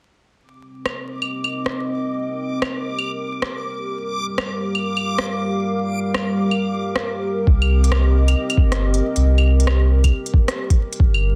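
A 136 BPM future garage groove in 4/4 with a 66% swing on the sixteenths sets a melancholic, nocturnal tone in C minor, moving from Cm7 to Gm7 at 3.9 seconds and back to Cm7. An organic electronic drum kit of claves, smooth hi-hat and rim click runs from 0.9 seconds, tape-warm and re-recorded in a large room, with soft clipping on the snare. Alongside it, a dark analog pad of detuned square, sawtooth and triangle waves with a sub octave and ring modulation holds slow-attack chords from G3 to F5, coloured by chorus, 12-bit sampler grit and sidechain pumping. A reversed, granular texture swells dreamily on a bright D6 from 1.2 to 7.5 seconds, bathed in its own reverb. At 7.5 seconds a muffled, pitched-down, overdriven kick and a round sine sub bass from G1 to C2 arrive up front, the bass carrying sidechain pumping. The dense, heavily limited master carries light digital ambience and a layer of vinyl crackle, and this excerpt is cut from a longer piece.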